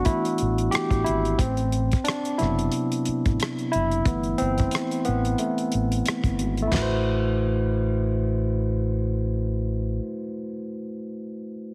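A barky, lightly overdriven tine electric piano, heard through a combo amp, takes a solo over G69 and Am69 chords for the first 6.7 seconds of this introspective, late-night R&B and neo-soul fragment at 90 BPM in A dorian, swung on the 16ths and tuned to A4 = 436 Hz. A dry, damped 70s drum kit with dark cymbals, a fat snare and a tight kick plays until 6.9 seconds, while a round, punchy fingered electric bass sits up front from 0.4 seconds. The whole recording has a heavily compressed, radio-like sound with light reverb and small room ambience.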